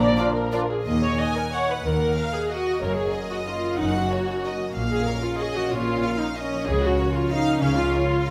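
Unfolding in a rubato 3/4 at 186 BPM, this sweeping, bittersweet classical excerpt in Eb minor opens with a brief touch of flute, mellow clarinet, bassoon, French horn section, trombone section and dark trumpet stabs that is gone by 0.7 s, leaving a very quiet, sul tasto violin melody floating above a second violin line, lush up-front violas, bright ringing harp arpeggios, and a bass of rich cellos and double basses, set in a moderate recital hall reverb.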